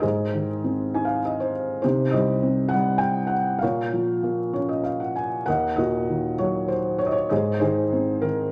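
In a 3/4 at 99 BPM, played with a free rubato, this short classical fragment is cut from a longer piece for lyrical solo piano, tuned to A4 = 444 Hz, and carries a cool, brooding mood. A felt-muted upright piano plays alone for the full 8.5 seconds, ranging from Eb2 up to Ab5. Its tone is soft, dark and boxy, with audible action noise and an intimate, up-front presence. Short piano fills appear at 0.6 and 4.2 seconds, while the harmony moves from Ab through Cm, Bbm and Ebm before settling back on Ab. A moderate recital-hall reverb gives the sound some space, and a layer of vinyl crackle adds a worn patina.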